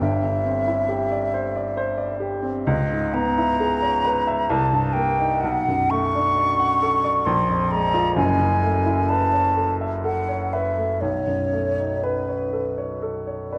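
Luminous and dreamy, this short impressionist excerpt for flute and grand piano drifts in a rubato 3/4, with the silver concert flute carrying the melody in a hollow, airy voice touched with vibrato and tongued notes. Beneath it, the baby grand accompanies from start to finish with a clear, open tone and long sustain, sitting up front as the harmony glides through colorful chords such as C#m7, F#m11 and B9. A wet recital-hall reverb and a dark production surround the pair for the full 13.6 seconds.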